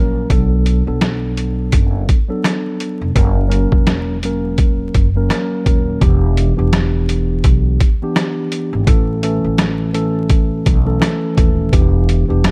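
A mellow, clean tine electric piano and a woody, growly pizzicato upright bass open this moody boom-bap hip-hop excerpt at 84 BPM, with a swung 16th feel over chords moving from Bm7 and F# to Em7 and A. A compressed, pitched-down sampler-style drum kit enters at 0.3 seconds, its overdriven, thumpy kick, medium-tuned snare, rim click and hi-hat sitting up front. The dry, dark production carries a layer of vinyl crackle that gives the groove a gritty edge.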